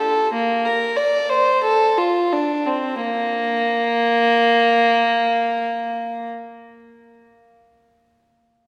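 Flowing and radiant, this fragment of a baroque-style classical suite movement for solo violin in 4/4 unfolds with rubato, easing its pace over the first 3.0 seconds before a new section begins, the single bowed, period-style violin sounding up front with a reedy, gut-string tone from Bb3 to D5 until it falls silent at 6.3 seconds, all wrapped in a long, wet church reverb heard from further back in the room.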